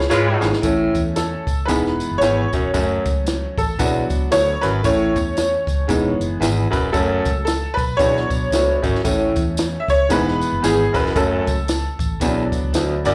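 Uptempo 1960s-style soul with an uplifting, joyful mood and a swung 4/4 feel, heard as a live gig through a club's PA with light reverb, cut from a longer piece. It opens with a drum fill and a band accent, where a tight horn section punches in briefly before dropping out at 0.5 seconds. From 0.6 seconds the bright upright piano takes a solo, woody and slightly detuned, sitting up front with a slapback echo over a cycle of A, E, F#m and Bm. Beneath it, a growling baritone saxophone plays a raspy, gritty riff with scooped notes and its own slapback echo. A dark, foam-muted electric bass gives a round, amped low end, while a compact cocktail kit adds a punchy kick and high-tuned snare. A jingly tambourine sits low in the mix, keeping the groove bright.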